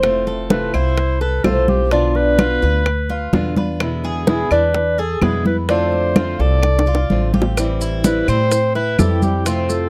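A clear, smooth-topped clarinet sings a classical-style solo line over this sultry, danceable Cuban son and guajira in A minor at 127 BPM, carried by a woody, thumpy gut-string upright bass up front, a metallic double-strung tres picking arpeggios, a boxy fingerpicked ladder-braced acoustic guitar with finger squeak, bright damped congas, tight high-tuned bongos, background claves, and grainy maracas joining at 7.6 seconds after a drum fill, all in a dry, close 1970s-style studio sound with light reverb.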